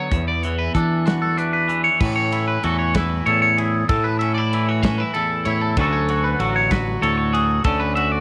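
A clean, twangy electric guitar picks high arpeggios through a phaser, ringing over a second guitar whose scooped tone and lush chorus carry the accompaniment in this bright, wistful math rock and midwest emo excerpt in 6/8. Beneath them, a punchy fingered bass growls with overdrive, while a modern studio drum kit with a dark, smooth sound and rolled-off top plays kick, snare, hi-hat, ride and crash. Light reverb and small-room ambience surround the parts, and the harmony moves from E5 to A69 at 2.0 seconds.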